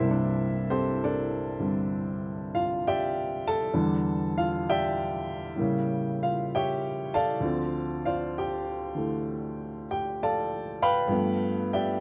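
Solo jazz at a slow 65 BPM in 4/4, with a swung eighth-note feel in C mixolydian, this short cut from a longer piece has a sophisticated, swinging mood. A single upright piano carries everything from 0.0 to 12.0 seconds, ranging from C2 up to B5. Its tone is woody and vintage, with long sustain, and the audible action noise adds an intimate, up-front presence. The harmony moves from C13 through Em7, A7b9 and Dm7 before arriving on G13 at 11.1 seconds. Close, detailed microphones and light reverb keep the sound smooth and personal, with the instrument tuned to A4 = 439 Hz.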